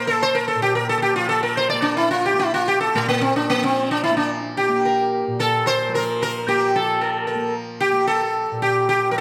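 The rhythm sits in a straight, even 4/4 pulse, setting a radiant, devotional mood for this fragment of Hindustani classical music in raga Yaman. A plectrum-plucked sitar carries the melody up front from the opening moment to the end at 9.2 seconds, its tone bright and round, with sympathetic strings adding a shimmering halo. Beneath it, a softly plucked tanpura holds a mellow drone, sitting well back in the balance, with its own gentle shimmer. Both instruments carry a buzzing edge that gives the acoustic sound its characteristic resonance. The music moves into a new passage at 6.7 seconds, and a moderate concert-hall reverb lends the performance a spacious, glowing air.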